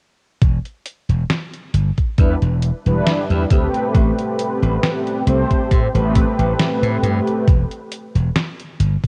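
A worn, warbling cassette-tape sound with warbly pitch drift and light reverb wraps this hazy, woozy vaporwave excerpt, cut from a longer piece and moving at a slow 68 BPM in 4/4 with a gentle swing on the sixteenths. From 0.4 seconds a thumpy, sampler-style electronic kick sits up front alongside a detuned 8-bit digital drum machine supplying hi-hat and a medium-tuned snare, both carrying a tape-warm character. A bright, punchy slap bass, amped and thickened by tube saturation, runs low between E1 and A2 and stays prominent in the mix. At 2.2 seconds a mellow synth brass enters until 7.5 seconds, a round, dark, sustained patch built from detuned sawtooth and square waves with a sub octave, a filter sweep, a fast attack and vibrato, spread through lush chorus and analog delay. The harmony drifts from Em7 to Am9 and settles on Em, giving the short passage a dreamy, slightly seasick glow.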